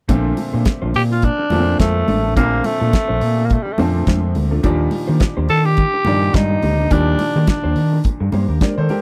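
Dry and close, this short disco clip has the feel of a 1970s studio, with little reverb around the instruments. At 106 BPM in Bb major, with a light swing on the sixteenths, the groove is glamorous and made for dancing. A damped 70s drum kit sits up front with a fat snare, tight kick and hi-hat, joined by a growly, overdriven fingered electric bass that stays round and prominent. Behind them, ringing high-tuned congas played with soft hands, a dark, compressed electric guitar with a subtle chorus, and a clear, boxy grand piano with short sustain fill in the accompaniment. A raspy, gritty tenor saxophone takes the melody from 1.0 to 8.0 seconds, punchy and vintage in a pop style. The harmony moves from Bbmaj7 to Ebmaj7 at 4.6 seconds.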